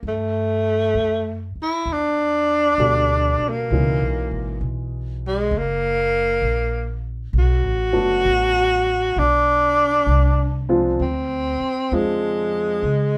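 A breathy tenor saxophone carries the melody up front, its whispered, soft-attack tone shaded with vibrato and scooped notes in an intimate jazz style. This tender, late-night jazz ballad moves at 66 BPM in 4/4 with a swung eighth-note feel, and the passage is cut from a longer piece. A grand piano supplies accompaniment with a natural, intimate sound in which the action noise can be heard, and it drops out at 12.8 seconds. Underneath, a pizzicato upright bass on gut strings gives a woody, thumpy, dark foundation. The harmony moves from Gmaj9 through C#m7, F# and Bm7 to Dm7b5, and the trio sounds like a band playing live together in a small room with moderate reverb.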